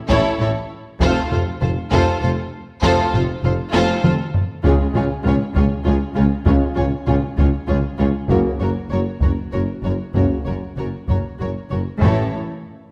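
A lush, triumphant wash of bowed strings and low brass fills a scoring stage with moderate reverb in this heroic, epic orchestral film-score excerpt, moving at 98 BPM in 3/4. Warm symphonic violins carry the smooth, vibrato-rich melody over a darker, woody studio violin line and expressive, portamento-tinged violas, while background cellos, double basses and a dark solo tuba anchor the low end and a heavy-stick taiko ensemble drives the pulse with a fill at 3.7 seconds. From 1.0 seconds a dark, vintage French horn section and a very quiet, tight trombone section sustain chords, and close calf-head timpani sound at 12.0 seconds as the harmony returns to A.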